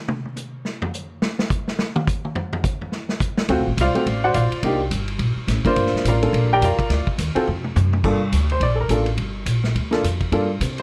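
The recording has a dark, warm production with light reverb, and every player sits up front. It is a cool, late-night jazz piano trio in a brisk swing, cut from a longer piece. A vintage drum kit opens alone until 3.5 seconds, with a gritty, saturated tone, dark cymbals, a medium-tuned snare, a tight kick and a rolled-off top. The upright piano then takes the lead with a smooth, slightly detuned, vintage character. The woody, pizzicato upright bass joins it at the same moment, over restless dominant harmony such as D7#9 before settling on Gm7. A short drum fill at 7.5 seconds marks the turn into a new section.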